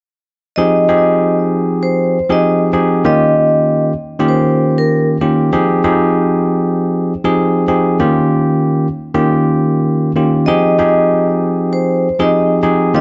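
The recording sits in a small room ambience with a moderate echo-chamber reverb, and the top end is rolled off. This is a tough, moody hip hop piece with a swung sixteenth-note feel, cut from a longer track. A barky tine electric piano carries the accompaniment from 0.6 seconds to the end, sounding bright, bell-like and clean, placed directly up front with a cassette-tape colour. Above it, a vibraphone played with soft mallets takes the melody in a narrow upper range, its metallic, ringing tone mellow and warm, with a slow motor vibrato. The vibraphone drops out at 5.1 seconds and returns at 10.5 seconds, while the harmony sways between Fm9 and Eb9 throughout.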